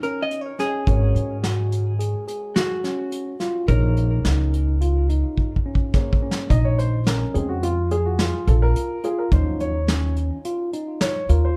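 A clean hollow-body jazz guitar carries the melody through tape echo over grand piano chords, tape-echoed tine electric piano arpeggios and up-front acoustic brush drums, with a woody pizzicato upright bass joining at 0.9 seconds, in this intricate, brooding progressive instrumental in 5/4 at 106 BPM in Bb minor; after the guitar drops out at 5.9 seconds and a drum fill, the grand piano takes a solo from 6.5 seconds over Bbm9 harmony moving to Ebm7, all set in a dark production with light reverb.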